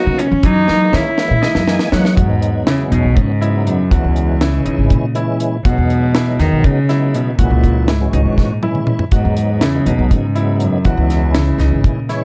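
Progressive instrumental band music in a driving 7/8 at 242 BPM in eighths, bright in mood and set in E lydian, where an up-front, reedy bowed cello with a gut-string tone and slapback echo carries the melody over a lightly overdriven tonewheel organ with key click, chorus vibrato and slow rotary speaker, brilliant yet worn grand piano arpeggios, woody, thumpy pizzicato upright bass and a dry reggae kit with a high-tuned snare whose drum fills land from 0.7 to 2.2 and 8.4 to 9.1 seconds as the harmony moves from F#13 into alternating Emaj7 and C#m, all in a dark production with light reverb cut from a longer piece.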